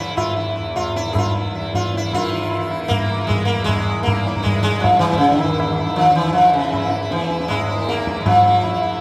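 A buzzing, plectrum-plucked sitar sings the melody up front from the very start, its sympathetic strings shimmering over a softly plucked tanpura drone that hums in the background, with low-tuned, ringing tabla joining at 0.2 seconds. This radiant, meditative fragment of a longer Hindustani raga performance steadily speeds up throughout. The long cathedral-like reverb of a church or concert hall lets every note bloom and linger.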